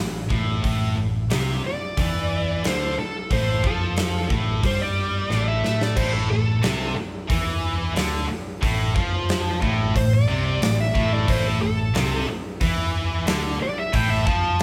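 Hard rock in A minor at 90 BPM, aggressive and menacing, cut from a longer piece: high-gain distorted and background overdriven guitars grind out a bright picked riff over a dark, round picked bass, a huge up-front arena kit with punchy kick and bright cymbals joins at 0.3 seconds, a warm bluesy lead guitar solos up front from 1.7 seconds, and after a drum fill a tight, double-tracked distorted guitar adds its riff at 6.0 seconds, all played live in one room with a moderate large studio reverb.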